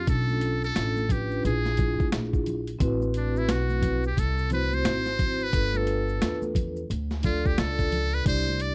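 Cool and mellow, this jazz-hop cut from a longer piece sets a metal-muted trumpet, buzzy and breathy with scooped notes, over a woody pizzicato upright bass and a vintage, ringing vibraphone played with soft mallets and slow motor vibrato. A gritty, compressed boom bap kit with a thumpy kick and high-tuned snare drives the swung groove, while bright maracas and congas sit in the background. At 2.8 seconds the trumpet moves into a jazz-style solo, and the dry, close recording has a 1970s studio character.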